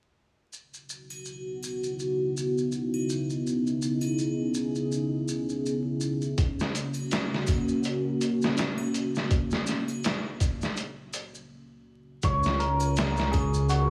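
A deep, detuned analog pad with chorus holds moody sustained chords through the opening section of this smoky, melancholic trip hop excerpt over compressed maracas and triangle, joined at 6.4 s by a muffled, thumpy sampler-style drum kit, and after a brief break, by a shimmering, hammered cimbalom melody with tape echo and a rumbling saw bass with tube saturation, both entering at 12.2 s, the mix bathed in lush hall reverb and vinyl crackle.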